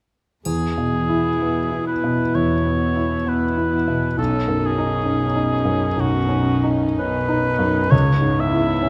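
Closely miked with light reverb, this lyrical, lush romantic classical fragment for piano and orchestra moves in a rubato 4/4 through E, Badd9 and C#m7 chords: a clear grand piano carries the melody up front with audible action noise and long sustain, while a warm solo cor anglais with light vibrato sings a second line, a bowed cello section plays an intimate sul tasto bass in the background, a pure, floating viola section adds accompaniment from 0.9 s, and a close, dry triangle sounds only from 0.5 to 2.3 s.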